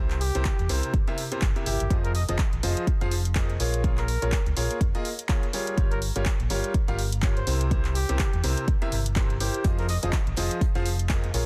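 Piano house with a bittersweet, soulful mood, cut from a longer piece, built on a bright, brilliant concert grand piano riff and a dark, round fingered electric bass, both pumping under sidechain, over a layered electronic kick and a tape-tinged analog drum machine adding handclaps and hi-hat in a swung 4/4. A mellow jazz-style trumpet with light vibrato and scooped notes sits in the background, playing melody from 0.2 to 10.1 seconds over chords moving from C7 through Fm7, Bbm7 and Gm7b5, while a very quiet acoustic drum kit adds hi-hat and snare from 9.6 seconds. The sound is dry and dense, with a heavily limited modern master.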